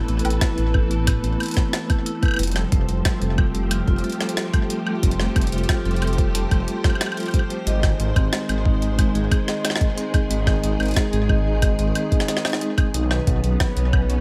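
Silky string-machine chords with ensemble chorus and metallic, ringing vibraphone arpeggios with dub echo open this eerie, intricate IDM excerpt at 91 BPM, soon joined by a deep, rumbling detuned saw bass, a gritty, pitched-up jungle kit of hi-hat, rim click and woodblock treated with overdrive and delay, and a thumpy overdriven kick entering at 0.4 seconds, all moving through Amadd9, Fadd9, G# and Badd9 in a dry, close sound.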